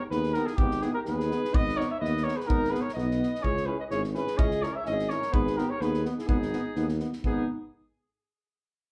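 Heard from further back in a small, wet room, this short excerpt of Balkan brass band folk music has a roomy, slightly removed sound. A flugelhorn carries the melody up front with vibrato and a touch of plate reverb, while a second, warm flugelhorn with light vibrato plays a distant supporting line beneath it. A bright trombone sits in the background, a very quiet, mellow euphonium adds soft accompaniment, and a tuba with a smooth top holds down the bass, all in a classical style with light vibrato. An acoustic drum kit, placed up front, gives the swung 2/4 feel a punchy kick and a medium-tuned snare. The harmony moves from G#m to C#m at 3.4 seconds and returns to G#m at 5.3 seconds, leaving a restless, bittersweet mood.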